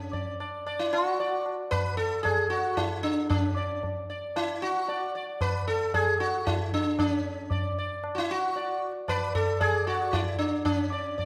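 A plectrum-plucked sitar opens at 0.0 seconds, its buzzing tone and shimmering sympathetic strings carried up front as it traces a meditative, serene Hindustani melody in raga yaman over a seven-beat cycle, joined almost at once by a high-tuned, ringing tabla sitting close, both bathed in the wet reverb of a recital hall in this short cut from a longer piece.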